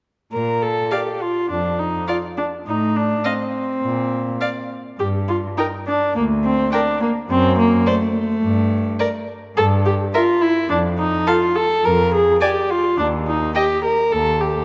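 In a rubato 4/4, this spirited, graceful passage from a quick classical-period string quartet movement sets a close, up-front viola with a nasal, airy-bowed tone and a reedy cello bass, also up front, beneath a rich lead violin set in the background and a second violin line, both with light vibrato and a period gut-string color, heard in a moderate concert hall reverb.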